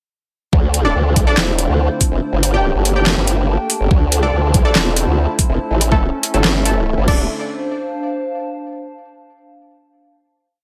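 A heavy, aggressive half-time dubstep groove kicks in at 0.5 seconds, as an overdriven, knocking electronic kick and an up-front kit of deep snare, handclaps, metallic hi-hats and crash cymbal pound beneath a detuned, chorused formant-sweep wobble bass whose wobble speed keeps changing, while bold, punchy orchestra-hit-like synth stabs echo sparsely, a lush sawtooth supersaw pad pumps with phaser in the background, and a warbly, nostalgic lo-fi tape-like pad carries slowly shifting chords alone through the final chord to 8.9 seconds.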